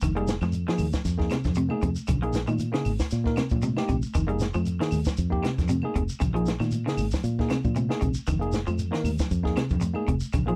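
Intense and driving, this dry, close afrobeat excerpt with a light sixteenth-note swing cycles through Fm7, Bbm9 and Fm9 chords. A compact cocktail drum kit with a high-tuned snare and punchy kick sits up front beside a dark, round, foam-muted fingered bass, and a worn, slightly out-of-tune tine electric piano, lightly overdriven, enters at 0.2 seconds. A twangy, slightly broken-up electric guitar picks arpeggios through an ensemble chorus, over grainy shekere, with thick-skinned congas and woody, distant claves further back.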